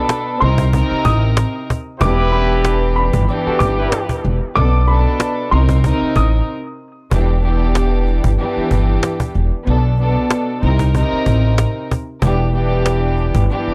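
A dry, gritty hardware recording with little reverb carries this tough boom-bap hip-hop cut, its swung groove built on a snappy, close cajon and a thumpy, woody pizzicato upright bass sitting up front. Bowed chamber strings float with a soft attack throughout, while a dark, slightly detuned vintage upright piano with tape echo carries the high melody until 6.3 seconds. A smooth jazz-style trumpet section adds brief stabs between 2.0 and 4.0 seconds, and a short break at 6.5 seconds leads into the second section.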